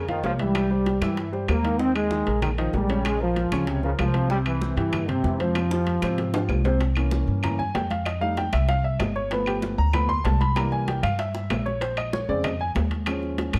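Salsa at a driving, fiery 192 BPM, this excerpt opens with a tight, smooth-topped trombone section carrying the melody with vibrato over a woody, present upright piano and a pizzicato upright bass with steel strings, while ringing timbales sit close and round, low-tuned bongos, hard-handed congas and woody claves sit in the background. The trombones drop out at 6.5 seconds, during a drum fill that starts at 5.6 seconds, and the long-sustaining piano takes a solo from 6.8 seconds over dominant chords such as C7b9, F7 and G7. Light reverb gives the whole a dark, warm production.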